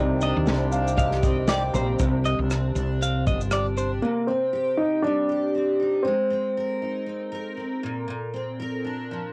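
Wistful and reflective, this short cassette-recorded acoustic pop fragment in C minor at 118 BPM with a light 16th-note swing opens with a soft, felt-muted upright piano fill, a reedy background harmonium, a full-bodied double-tracked steel-string acoustic guitar with finger squeak, a bright twelve-string electric guitar playing arpeggios, a round, punchy fretless bass with tube saturation and an airy country drum kit of kick, snare, rim click and shaker, before a woody upright piano takes the melody at 4.0 seconds over shifting add9 chords and the acoustic guitar carries on alone to the close at 9.3 seconds in a light home-recorded reverb.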